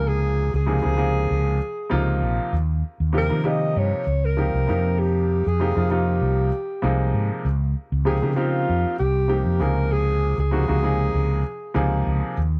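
Electric jazz fusion at 98 BPM in a straight 4/4, this short cut from a longer piece feels intense and funky. A breathy alto saxophone carries the melody with a dark subtone, punchy attack and scooped notes, set back in the room and treated with a slapback echo. Beneath it, a clear grand piano supplies the accompaniment with an intimate, present sound in which the action noise of the instrument can be heard. A mellow fretless electric bass sits up front with a round, amped tone, playing from the start until 12.6 seconds. The harmony moves through Bbm11, Eb7, Fm9 and Dbmaj9#11 before settling on a rootless Gbmaj9 over Db, all captured as a dry, close 1970s-style studio recording with a small room reverb.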